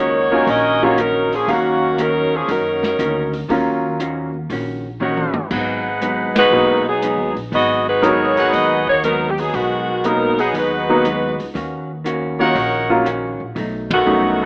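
A vibrato-rich, warm saxophone section carries the melody from the outset over dark, picked hollow-body guitar, woody pizzicato upright bass and brief trumpet stabs, soon joined by up-front, clear grand piano at 0.3 seconds and a boomy-kicked jazz drum kit whose fill at 5.0 seconds coincides with the smooth-topped trumpet section's return, in a swinging, brassy big band cut from a longer piece with a rough home-demo, AM-radio sound.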